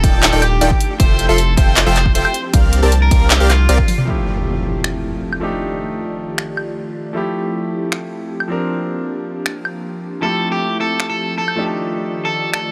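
This bright, euphoric future bass excerpt opens on a drop at 156 BPM in a half-time feel in F major: a punchy electronic kick, a pop kit with bright hats, snaps, claps, toms and woodblock, a thick saturated sub bass, detuned supersaw stabs with a filter sweep and delay, and dreamy, airy arpeggios all pump against the sidechain. Over a breathy, chorused pad, a twangy electric guitar at the edge of break-up carries the melody through spring reverb and delay, on lush chords like Ebmaj9#11 and Fmaj9. After a drum fill, an impact hits at 4.1 seconds as an intimate grand piano takes over the accompaniment with audible action noise, and the guitar returns at 10.2 seconds in a dry mix.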